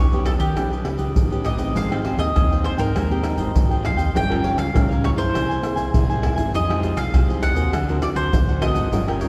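A samba and choro piece at 100 BPM in a straight 4/4, this short excerpt carries a yearning, bittersweet mood through its rich chord changes, moving from Ebaug7 through Abmaj7 and Gm7b5 toward Fm9 and D7b13. A bright bowl-back mandolin, picked on doubled strings, carries the melody between G4 and G5, while a fingerpicked nylon-string guitar with fresh strings adds a warm, classical accompaniment. A crisp cavaquinho sits in the background, its bright, picked tone reaching up to G#5. Beneath them, a fingered electric bass runs through overdrive, giving a dark, fuzzy, punchy low end that contrasts sharply with the acoustic strings. The percussion of tube shaker, pandeiro, tamborim and a deep surdo, played with soft hands and sitting up front, enters at 0.1 seconds, and the whole ensemble is bathed in the lush reverb of a church or concert hall.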